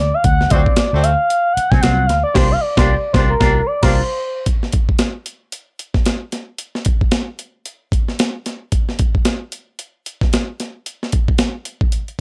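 Funky and playful, this swung funk fragment opens with a smooth, vibrato-laden sawtooth synth lead soloing up front over a round, foam-muted vintage bass, soon joined at 0.5 seconds by a twangy envelope-filtered electric guitar bathed in lush chorus and a distant, mellow horn section doubling in octaves. The harmony moves from D7#9 to C9sus4 with a band accent at 2.4 seconds, and the other parts drop away by 4.5 seconds, leaving the gritty, compressed breakbeat kit with its thumpy kick to carry on alone until 12.2 seconds, all in a light reverb.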